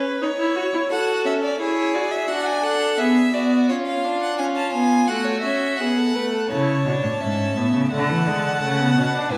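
In a straight 4/4 pulse, this contemplative yet driving baroque-style fugue for string quartet opens with a rich, focused violin second line and a clear viola accompaniment, both bowed with vibrato, before a smooth, even violin melody enters at 0.9 s and a close, up-front cello bass joins at 6.5 s, the quartet heard in a reverberant recital hall in a passage cut from a longer piece.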